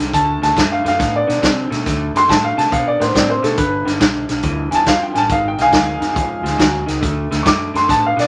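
Electric blues shuffle excerpt at 139 BPM with a soulful, rollicking swing, where a clear, woody upright piano takes an up-front solo over a slightly broken-up, lo-fi guitar riff through a small old amp, a dark, foam-muted fingered bass, and a vintage drum kit of hi-hat, tight kick and medium-tuned snare with a rolled-off top, all moving through D7, G7 and G#dim7 before landing on D in a small room.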